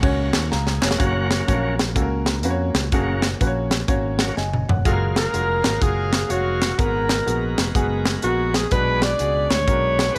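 Light reverb and small room ambience frame this brief cut from a longer uptempo gospel piece in F# major, moving at 124 BPM in 4/4 with a swung eighth-note feel and a reverent, uplifting mood. A crisp, polished fusion drum kit sits up front with a punchy kick and high-tuned snare, working across hi-hat, ride, snare and toms, with fills at 0.5 and 4.4 seconds. A punchy, direct fingered electric bass and a clear concert grand piano with deep low notes carry the accompaniment throughout, while a very quiet, hollow group handclap appears only briefly near the start. The tonewheel organ holds full, shouting chords through a slow rotary speaker with light overdrive, stepping forward for a solo from 1.0 to 4.9 seconds. At 5.2 seconds a breathy alto saxophone enters up front with light vibrato, subtone and scooped notes in a jazz style, singing over a progression that moves from F#maj9 to G#m9 to Bm6.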